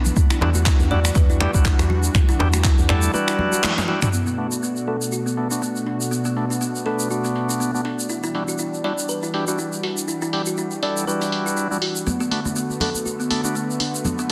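A swung sixteenth-note groove at 121 BPM in 4/4 drives this hypnotic afro house cut in B minor. The deep house drum kit, with hi-hat, finger snaps, handclaps, toms and crash cymbal, runs throughout, overdriven and filtered. An overdriven, up-front electronic kick and a soft, round, woody FM bass anchor only the opening seconds, while ringing, high-tuned congas with hard hands and a deep, dry djembe sit in the background. A grainy tube shaker runs under it all. A drum fill and band accent at 3.6 seconds lead into the second section at 4.1 seconds, where filter sweeps run on the drums and on the short, thumb-plucked kalimba arpeggios. Those arpeggios pump and trail dub echo, as do the reedy, clean tonewheel organ stabs, over a smooth, warbling vintage analog pad with lush chorus moving between Em9 and Bm7. The congas return at 12.1 seconds, and the dense, heavily limited mix carries a light digital ambience.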